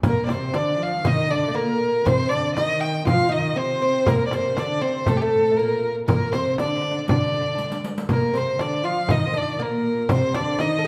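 Arabic maqam ensemble music in D maqam kurd, moving at 119 BPM in a straight 4/4 with a melancholic, longing mood, heard as a short section cut from a longer piece. A single bowed violin carries the melody up front, its tone rich and focused yet slightly distant, with vibrato coloring the line as it ranges from G4 to G5. Beneath it, a fretless, plectrum-plucked oud with double strings adds a woody second line, while a bowed cello section, smooth and close with an even vibrato, supports from lower down. Darbuka with a clay shell, a dry frame drum and a riq with dark jingles sit in the background, the hand drums played softly and the riq struck hard, with a drum fill at 7.6 seconds. The ensemble is set in a moderate recital hall reverb of 1.5 seconds.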